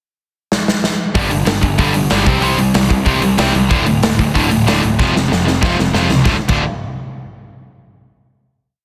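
A punchy, up-front rock drum kit with bright cymbals kicks off this short, upbeat punk rock piece at 188 BPM with a fill at 0.5 seconds, before two overdriven electric guitars, one up front and one very quiet, join at 1.1 seconds with palm-muted eighth-note riffs over a growly fuzz bass through a verse moving from G5 to C5, D5 and F5, another fill from 5.0 seconds, and a final D5 chord at 6.3 seconds in a dense, dry, heavily limited mix.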